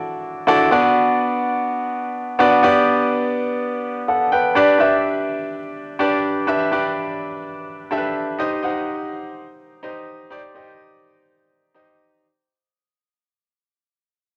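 Glossy and uplifting, this short pop fragment at 125 BPM in a straight 4/4 features a clear baby grand piano playing alone from start to finish, ranging from B3 to G5 and sitting polished and up front with a cassette tape character. Its chords move from Dadd9 through Bm and G before turning to Cm at 8.4 seconds, while a fade-out runs from 4.6 to 12.2 seconds. A wet spring reverb and a small room shape the sound of the home cassette recording, tuned slightly low to A4 = 439 Hz.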